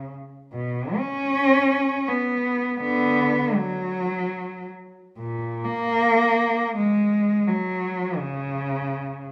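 A single bowed cello is heard from the very start, playing a lyrical, serene classical line in free time across a short passage cut from a longer piece. Its tone is rich and expressive, with vibrato colouring its notes and portamento gliding between pitches, moving between A#2 and C#4. The player sits up front in the mix, yet the sound also carries a distant quality. A moderate recital hall reverb, lasting about 1.3 seconds, surrounds the instrument with a gentle sense of space. The cello plays alone for the whole 9.3 seconds, tuned to A4 = 439 Hz.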